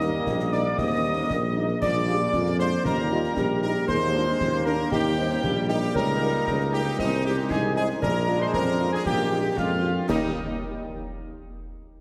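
Heavily compressed, radio-like sound bathed in a long, wet concert-hall reverb carries this proud, rousing military-style wind-band march in Eb major at 116 BPM in 2/4, cut from a longer piece: a soft-edged trumpet section with light vibrato leads the melody over a distant, roomy woodwind section, a pure, wooden-toned piccolo, a background euphonium, a very quiet, tight French horn section, bright, close-miked trombone chords and an up-front mellow tuba bass, while concert snare, bass drum and dark-toned clash cymbals sit in the background.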